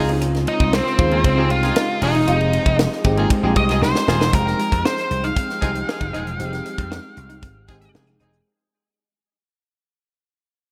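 Bright 1980s-style digital production in a lush hall gives this slick, nocturnal jazz-funk pop cut at 116 BPM in F minor its polish: a tight, up-front funk drum kit with a high-tuned snare and a punchy amped slap bass drive it, a glassy, bell-like FM electric piano with lush chorus comps, a very quiet semi-hollow guitar picks a clean riff, a horn section with light vibrato carries a delayed second line, a dark, woody string section holds very quiet sustained chords, and an up-front octave-fuzz lead guitar plays the distorted, delayed melody from 0.5 s before a drum fill leads into a fade-out starting at 4.3 s.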